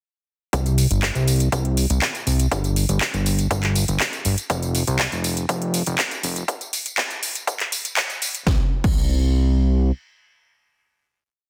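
A steady four-on-the-floor kick drives this short progressive house piece at 121 BPM in a straight 4/4, with programmed hats and a backbeat from the house drum kit beginning at 0.5 seconds. The mood is hopeful and uplifting, and the piece builds up from 0.5 to 8.5 seconds, with a filter sweep running until 8.5 seconds before a final note rings out. The electronic kick is punchy, layered and overdriven. The kit adds a cracking snare, metallic closed and open hats, handclaps, tambourine and a crash, all sitting up front and re-recorded in a large room. Underneath, a fat, detuned sawtooth analog bass plays a dotted rhythm in a low register, with a plucky filtered attack and sidechain pumping, and it holds on until 9.9 seconds. Light reverb surrounds a dense, heavily limited modern master.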